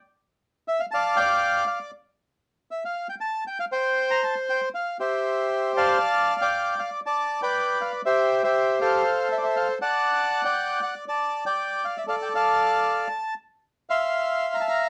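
Played rubato around 118 BPM in 4/4, this melancholic, sultry tango fragment features a solo bandoneon from 0.7 s, its reedy, shadowy voice sitting up front and ranging from G4 to C6. Harmony moves from Dm through C before settling into D minor at 6.0 s, where the second section passes through Bm7b5, D7#9/A and Dm/A before closing on Cadd11. A moderate club reverb and a warm, dusky production frame the instrument, in a passage cut from a longer piece.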